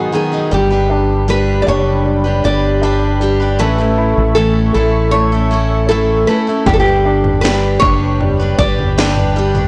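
Heartfelt and hopeful, this pop ballad fragment sets a small, fingerpicked nylon-string guitar melody over a clear concert grand piano with short sustain, bright picked arpeggios from a full-bodied dreadnought steel-string, and a shimmering, chorused pulse-width pad holding soft-attack chords in the background. A round, dark fretless electric bass sits up front from 0.5 s. A layered electronic house kit arrives at 6.7 s with a punchy kick, cracking snare and toms, and the whole recording carries light reverb under a blown-out, overdriven sheen.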